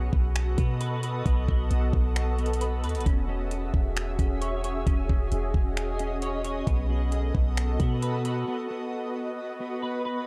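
This dreamy, floating cloud-rap fragment opens with a shimmering ambient pad and a dark, clean semi-hollow electric guitar. The pad holds ethereal sustained chords with an octave-up shimmer, granular texture, chorus and reverb, pumping against the beat. The fingered guitar arpeggios have a hollow-body tone thickened by ensemble chorus and analog delay. From the start, a deep, boomy 808-style bass sits up front, and at 0.1 seconds a trap kit arrives with knocking kick, metallic hi-hats and finger snaps in a half-time feel at 133 BPM. The harmony moves from B7 to E69 and back to B7. When bass and drums stop at 8.4 seconds, pad and guitar carry a short break to the end of this cut from a longer piece, heard through a dry, gritty recording with digital ambience.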